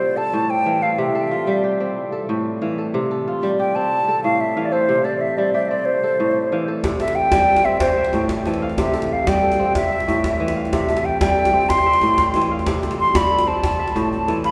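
A hollow, airy concert flute and a bright, ringing kora open this hypnotic West African traditional piece together, both sitting up front in a long cathedral reverb. The kora lays down fingerpicked arpeggios across a low-to-high span while the close-miked flute carries the melody with a crisp attack and vibrato. The music moves at 123 BPM in a straight 12/8, centered in C major as the harmony alternates between C and A minor shapes. At 6.8 seconds the flute takes a solo and a medium-tuned djembe enters, its hard hand strokes and buzzing metal rattles captured in a live room. The djembe closes with a short fill at 14.1 seconds as this cut from a longer performance ends.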